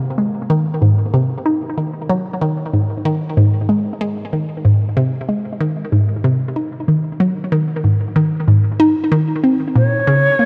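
This ambient piece, cut from a longer work, moves at 94 BPM in a straight 4/4 with a mysterious, hypnotic mood, tuned slightly sharp to A4 = 441 Hz. A hollow square-wave pluck carries the riff from the start, ranging from Ab2 to Eb4. It sounds bouncy and detuned, with a fast attack, short decay and a moving notch filter, and it sits up front, thickened by chorus and tape echo. The harmony rests on an Ab5 chord before shifting to Bb minor at 9.8 s, when a concert flute enters on a single Db5. The flute is airy and expressive, with vibrato and tongued articulation, and it carries a distant quality even though it sits forward in the balance. A huge ambient reverb with a long tail surrounds the whole, giving the short passage a cavernous, suspended atmosphere.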